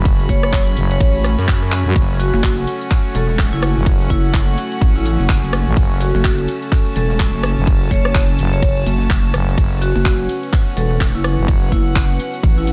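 A growling, tube-saturated FM bass sits up front with a pulsing, detuned wobble bass carrying chorus and overdrive, both pumping against a punchy, tape-toned electronic kick in this gritty, aggressive bass house cut at 126 BPM in F# minor with swung 16ths. A garage kit of hi-hat, handclaps, cabasa, rim click and ride cymbal joins the groove, and a drum fill lands at 1.7 s, while a metallic vibraphone melody rings through dub echo over reedy, gut-strung chamber strings and a moody analog pad in the background. The growling bass drops out at 11.7 s, and the whole track is bathed in digital ambience.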